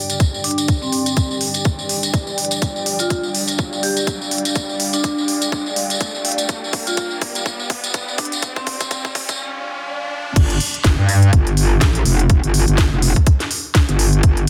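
Gritty and aggressive, this swung bass house excerpt builds for 10.4 seconds with a dark analog pad pumping alongside a warbly, nostalgic tape-like pad, a mellow soft-mallet vibraphone melody trailing dub echo, a riser, a jingly tambourine and a tight kick with a crisp, cracking garage kit fill, before dropping into a saturated, metallic FM wobble bass that sits up front in a dense, heavily limited mix.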